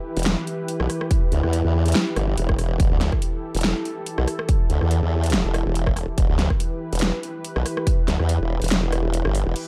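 A lush, detuned supersaw pad opens this menacing, chaotic heavy wobble dubstep drop in E minor at 142 BPM with a half-time, lightly swung feel, its sustained chords pumping under a low-pass filter as an up-front, overdriven formant-sweep wobble bass with chorus growls low alongside a tape-warm drum kit of huge snare, metallic hats, rim clicks and crashes, while a punchy electronic kick enters at 1.1 s and the whole band hits an accent at 9.2 s, all set in light digital reverb with a dark, warm production.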